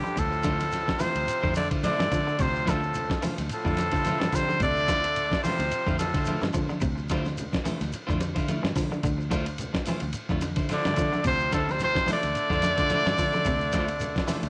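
Intense and hypnotic, this afrobeat groove rides on an up-front, compressed sampler-style drum kit with a thumpy kick and fat snare, a round fingered electric bass, ringing congas and a grainy shekere, while a twangy guitar at the edge of break-up picks arpeggios through tape echo and a clean guitar adds chorused stabs, and a punchy vintage trumpet leads over a very quiet, scooped alto saxophone and an edgy, close-miked baritone saxophone, the horns falling away from 6.5 to 10.7 seconds, the whole bathed in a moderate spring reverb.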